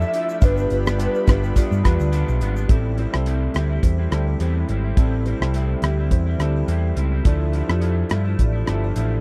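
A dry, close 1970s-style studio sound frames this lonely, wistful indie and bedroom pop fragment at 105 BPM in A minor, with a lightly swung 4/4 groove from a damped, up-front 70s drum kit of tight kick, hi-hat, rim click and shaker over a round, dark picked electric bass. A hollow, woody clarinet-like synth lead with vibrato, ensemble chorus and slapback echo states a brief melody before dropping out at 2.1 seconds, while a soft, detuned analog pad sustains chords in the background until 2.7 seconds. Throughout, a barky tine electric piano with cassette-tape colour and a twangy, slightly broken-up electric guitar with warbly pitch drift carry the accompaniment, and a buzzing kalimba rings quietly behind them from 0.4 seconds as the harmony moves from G7 to Am7 and then Dmadd9.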